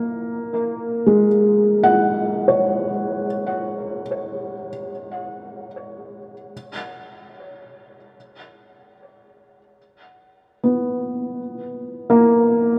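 A felt-muted upright piano plays alone in free time across this reflective, serene 12.8-second ambient excerpt, its intimate, boxy tone with audible action noise sitting up front between G#3 and F#5, touched by tape echo and bathed in a cathedral reverb with a 6.8-second decay, tuned to A4 = 441 Hz.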